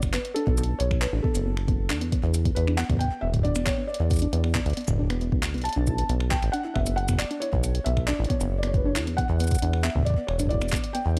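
A rubbery, saturated acid bass, a deep electronic kick and a gritty, pitched-up jungle-style kit of snaps, handclaps, hi-hat and shaker open this intricate, melancholic IDM excerpt together at 136 BPM in B minor, while a muted felt upright piano carries an intimate delayed melody over soft, round, detuned plucked arpeggios with chorus, all in a light reverb as the harmony moves from B7(no3) to E7sus2.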